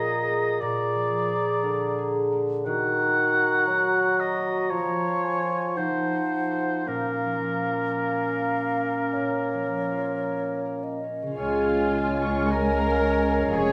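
In a rubato 4/4, this yearning, solemn excerpt from a slow romantic orchestral movement opens with airy flute, clear clarinet and an up-front oboe carrying second lines over mellow bassoon and ringing fingerpicked harp arpeggios in a reverberant recital hall, until at 11.4 s muted, veiled strings arrive (violins on a second line, rich violas, and cellos and double basses on the bass) along with a tight French horn section holding chords in the background, and the violins take up a brief melody at 13.5 s.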